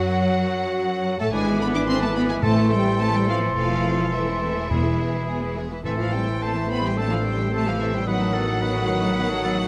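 Classical-period orchestral music, this stormy, urgent passage from a quick movement unfolds with a flexible, rubato feel. The violin section carries the melody high in its range with a lush, vibrato-laden sound. Around it, a second violin line sits very quietly alongside a pure, hollow concert flute and a clear solo oboe. A distant viola section, a mellow bassoon and a French horn section with a smooth top fill the background, the horns holding sustained chords, while a bright cello section and a rich double bass section anchor the bass. Round timpani struck with soft mallets on calf heads enter from 2.4 to 6.6 seconds, as the harmony moves from F#m through Am and E to a closing B7/A. Close, detailed microphones and light reverb keep each line distinct.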